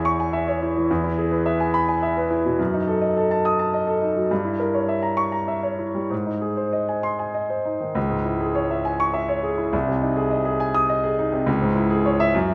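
Heard in a moderate recital-hall reverb, this stormy, agitated excerpt from a classical virtuoso piano study features a solo concert grand with a deep bass and an open, up-front tone, ranging from B#1 to D#6 in a rubato 6/8 tuned to A4 = 444 Hz, its opening section giving way to a new one at 8.0 seconds.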